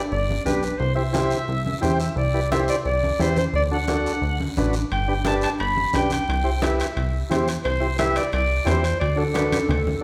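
A clear, jazz-style clarinet solo opens this sunny, danceable cumbia excerpt, its scooped notes and vibrato sounding up front yet roomy and distant, while a punchy, nasal plucky analog bass, low-tuned ringing congas in the background and a raspy, close, dry guiro join almost at once. A reedy, overdriven vintage combo organ adds accompaniment over a G, C and D progression, slipping in a short fill at 1.7 seconds. Ringing metal-shell timbales enter in the background at 4.9 seconds, a drum fill arrives at 9.5 seconds, and a large studio reverb gives the whole a wet space.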